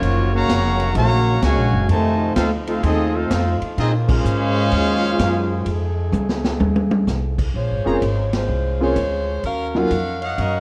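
Worn, warbling old cassette tape and a moderate large-studio reverb color this sultry, dramatic big band swing fragment in Bb minor at 127 BPM. Up front, a clear trumpet section with light vibrato carries the melody over a trombone section's second line and a very quiet cushion of soft-attack trombone chords, while a woody, thumpy pizzicato upright bass and a distant, roomy drum kit with a punchy kick keep the swing, the kit adding a fill at 6.1 s. At 7.5 s a close-miked saxophone section with vibrato takes over the melody, joined by soft-attack trumpet stabs and a smooth, vintage grand piano accompaniment.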